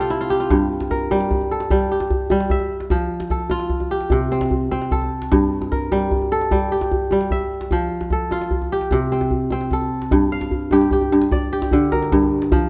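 West African traditional string music in G dorian, hypnotic and flowing at 100 BPM in a straight 12/8 feel, with a ringing, crisp kora fingerpicking arpeggios up front from G2 to F5 over a medium-tuned djembe, both opening with a brief fill before cycling through Gm, F and C5 chords in a recital-hall reverb captured by close, detailed microphones, the clip cut from a longer piece at 12.7 seconds.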